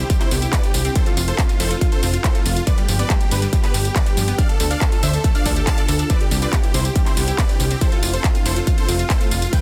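Huge, lush supersaw chords carry the melody from the opening moment, joined at once by a punchy, up-front analog bass with tube saturation and a catchy, detuned unison lead high above, both chords and lead pumping to the sidechain and trailed by digital delay. A distorted kick sits up front alongside handclaps, tambourine and metallic hats, while a round, chorused analog pluck spins arpeggios in the background and a shimmering, ethereal pad holds very quiet, dark sustained chords beneath. This uplifting, euphoric trance passage, cut from a longer piece, moves through Cadd9, F, G and Dm with a dense, heavily limited modern master and little reverb.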